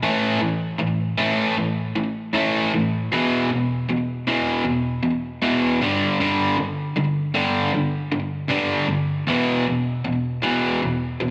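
A crunchy, overdriven electric guitar plays alone throughout this brief rock excerpt, its bright, picked, double-tracked tone sitting up front and ranging from E2 to A3, dressed in spring reverb and slapback echo. At a steady 78 BPM in straight 4/4 and E minor, the mood is brooding yet cathartic as power chords move from A5 to E5, G5 and back to E5 at 9.3 seconds. A moderate plate reverb fills out the heavily compressed, radio-like sound of this 11.3-second fragment cut from a longer piece.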